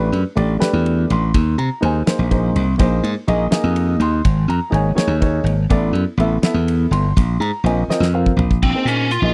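Electric jazz fusion in 6/8 with an intense, driving mood, where a punchy, bright slap bass and a damped 70s drum kit with a fat snare and dark cymbals push beneath a mellow baby grand piano, its action noise audible, voicing suspended ninth chords, until a drum fill at 7.9 seconds gives way to a biting, overdriven lead guitar entering at 8.6 seconds over a minor eleventh chord, all captured in a dry, close 1970s-style studio sound.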